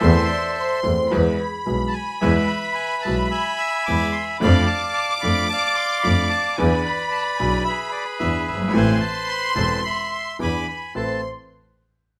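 A reedy bandoneon sits up front and carries the melody through this melancholic, dramatic tango fragment, taken from a longer piece and played with a rubato feel in 4/4. Alongside it, a studio violin section adds a smooth, even second line pitched between B5 and D6, shaded with light vibrato. A clear upright piano supplies the accompaniment with a woody, intimate tone, long sustain and audible action noise. A bowed double bass, played by one close-miked player, anchors the low end with a biting, nasal, earthy sound, an airy bow and light vibrato. A vibraphone struck with medium hard mallets adds metallic, ringing touches with fast motor vibrato, appearing briefly from 0.3 to 1.7 seconds and again at 11.0 seconds as a new section begins. Moderate studio reverb wraps the ensemble in a modest sense of room.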